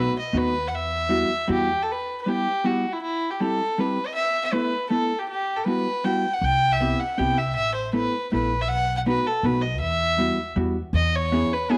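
A bowed violin with a biting, reedy gut-string tone carries the melody up front in this bittersweet, nostalgic musette waltz, a fragment of a longer piece in E harmonic minor at 159 BPM in a rubato 3/4. Beside it, a clean, compressed hollow-body electric jazz guitar picks the accompaniment through changes such as Emadd9, Cmaj7, Asus2 and B7, its shadowy vintage sound also placed close. A woody pizzicato upright bass plays briefly at the start, returns at 6.4 seconds, and the whole is set in a moderate spring reverb.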